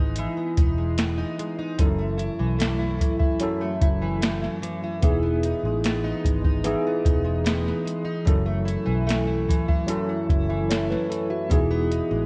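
A soft vintage rhythm box sets a slow, straight 74 BPM pulse in 4/4, its deep kick, crisp snare and metallic hi-hats overdriven and sitting up front from 0.2 seconds. This nostalgic, dreamy slice of indie and bedroom pop, cut from a longer piece, rests in E major and drifts between Emaj7 and F#m7. A fingerpicked plugged-in steel-string acoustic guitar carries the accompaniment up front, its warm tone marked by audible finger squeak and softened by analog chorus and a warbly pitch drift. Beneath it, a vintage muted fingered electric bass stays low, dark, round and punchy, with a foam-muted, amped character and transformer saturation. At 1.8 seconds a clean tine electric piano joins through a combo amp, pulsing with medium tremolo and a cassette tape coloring. Light reverb and a worn, warbling old-tape sound with dulled highs give the whole recording a faded, homemade glow.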